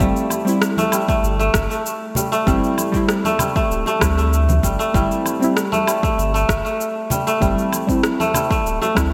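A crisp, fingerpicked kora rings up front with delayed arpeggios over a dark, detuned chord stab with chorus and sidechain pumping, a round sine sub bass, an overdriven electronic kick alongside overdriven cabasa, woodblock and rim click, soft congas and bongos in the background from 0.3 s, and a very quiet metallic singing bowl, all in a mystical, hypnotic organic downtempo groove on an A minor chord at 97 BPM, bathed in lush hall reverb with bright 1980s-style digital production.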